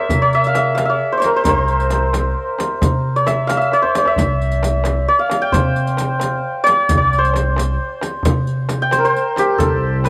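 Set in 6/8 at 88 BPM counted in dotted quarters, this short excerpt from a longer Persian modal ensemble piece moves with a straight, passionate feel in C dastgah homayun, tuned to A4 = 441 Hz. The santur carries the melody from the very start, its hammered strings bright, shimmering and ringing up front across a range from G4 to G5. Beneath it, a pizzicato upright bass with steel strings gives a woody, warm foundation between C2 and C3, while three hand drums played with soft hands fill out the rhythm: a deep, large frame drum heard in a small room, a riq with bright jingles kept close and dry, and a tight tombak sitting in the background. A drum fill arrives at 3.7 seconds, and at 9.6 seconds a bowed double bass enters on a low C2 drone, dark and intimate, played sul tasto by one player with a soft attack, light vibrato and a smooth top. Light reverb lends the ensemble a gentle sense of space.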